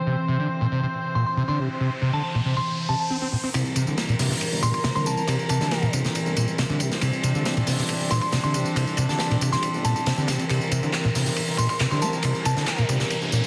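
A dense, heavily limited mix with vinyl crackle and a dulled top end sets this funky, energetic breakbeat excerpt at 138 BPM in C mixolydian, where a screaming, squelchy acid line, distorted and up front with tape echo, rides over dark, nasal chamber strings whose sustained chords pump against the sidechain. A glassy, crystalline synth bell carries the melody through a telephone-like filter with phaser and chorus, while an electronic riser climbs in at 1.1 seconds and again near the end. At 3.5 seconds the harmony moves from C to C7 and the build-up begins: a crunchy, gritty breakbeat kit with dark cymbals and a tight kick enters alongside layered electronic tambourine and handclaps and a fat, detuned analog bass sitting in the background.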